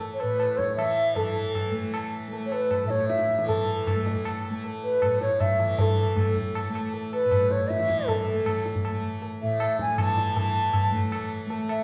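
Hindustani classical music in a serene, radiant mood at 157 BPM in 3/4, cut from a longer piece, where a breathy, mellow bansuri with vibrato and rolled-off highs sings up front from 0.1 seconds over a bright, buzzing, shimmering tanpura drone and a high-tuned, ringing, compressed tabla that is also up front, all heard in a wet recital hall.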